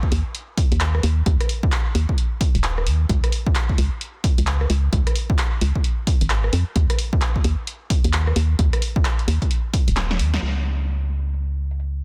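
An organ-like FM bass sits up front in this bouncy, soulful two-step UK garage cut. Its hollow, percussive notes have a fast attack and decay into a dark low end between Eb1 and F2, thickened by tube saturation. A punchy electronic kick, also close and forward, anchors the 131 BPM groove in 4/4, with 62% swing on the sixteenths. An analog drum machine adds handclaps, hi-hat, rim click and snare, with its hats, snare and short room each passed through a low-pass filter and set further back. The kick drops out at 10.0 seconds for a drum fill capped by a band accent, then a filter sweep runs over the drums until the cut ends at 12.0 seconds, in a dry mix with a dense, heavily limited master.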